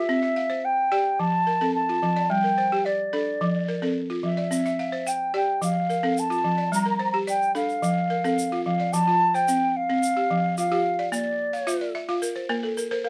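A pure-toned wooden flute with vibrato and a crisp attack carries the melody up front, while a woody, buzzing balafon played with rubber mallets spins arpeggios beneath it in this hypnotic, joyful West African string and xylophone piece at 109 BPM in F major. A grainy, close tube shaker joins at 4.5 seconds, and the tune moves through C, F and G minor before settling on F and then B-flat in a new section from 8.9 seconds. A balafon fill at 11.5 seconds closes this excerpt from a longer piece, all set in a light reverb.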